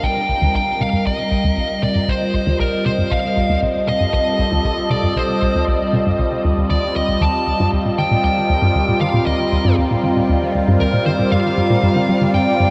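Luminous and expansive, this short passage cut from a longer piece is ambient, sequencer-driven space music moving at 117 BPM in a straight 4/4. A resonant blip pluck drives the low register with a juicy, squelchy riff, its fast attack and short decay given extra body by chorus and analog delay. Above it, a phased analog pad holds sustained chords that feel swirling and evolving, its detuned sawtooth tone sitting up front with a slow attack, phaser, chorus and shimmer reverb. A dark, fuzz-distorted electric lead guitar carries the melody in a higher range, picked and up front, trailing shimmer reverb and analog delay behind each phrase. The harmony moves from C minor to E-flat at 7.2 seconds and on to G minor at 11.3 seconds, all three parts sounding throughout. The mix is dreamy and soaked in a huge ambient reverb with a long 7.2-second tail.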